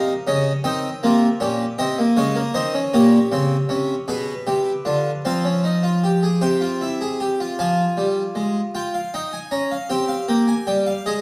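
Solemn yet driving, this 11.2-second excerpt of a baroque-style four-part classical fugue for solo harpsichord moves in a straight 6/8 at 52 BPM in dotted quarters, tuned to A4 = 441 Hz. The close-miked, up-front French-style instrument with three sets of strings sounds brilliant, plucked and full across Bb2 to Bb5, set in a recital-hall reverb with a 1.6-second decay, as its chords pass from Bbm through Gdim/Bb, Bdim7 and Csus4/F to C before a second section at 7.6 s turns through Fm and Gm7b5 to a closing C5.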